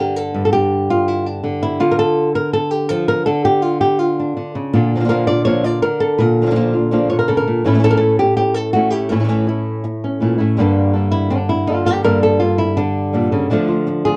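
An up-front, fingerpicked flamenco guitar carries the melody from the opening, its dark acoustic tone edged with audible finger squeak as it ranges from low bass notes up into the upper register. This fiery, passionate flamenco passage, cut from a longer piece, moves in a straight four-beat feel. A second fingerpicked flamenco guitar, sitting further back in the mix, enters at 4.7 seconds with chordal stabs, adding its own finger squeak beneath the lead line. The harmony travels from G5 through Dm, Bb and A before a nylon-string guitar solo arrives at 10.6 seconds over a Gmadd9 chord, settling back toward Dm near the close. A modest small-room ambience surrounds both players, and the overall production feels dark and warm.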